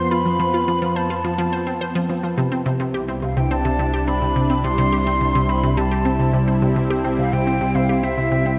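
A wet hall reverb with a 2.7-second tail and a dark production bathe this short cut from a longer piece of ambient, sequencer-driven space music, giving it a cosmic, expansive mood. At 106 BPM in a straight 4/4 and C major, a squelchy, resonant blip pluck carries the riff up front, its detuned square, sawtooth and triangle tones snapping with a fast attack and short decay through chorus and analog delay. Alongside it, a thick, warbling unison pad, also up front, holds sustained chords with a slow attack and a vintage chorused sheen, while an evolving analog drone anchors the bass, blending sawtooth, pulse and sine waves with pulse-width modulation, wave-folding and a long release. A breathy, hollow silver concert flute, close-miked and up front, sings the melody with vibrato and tongued notes, trailed by analog delay. The harmony moves from F to C6 at 2.4 seconds, and all four parts sound together throughout the 8.6 seconds.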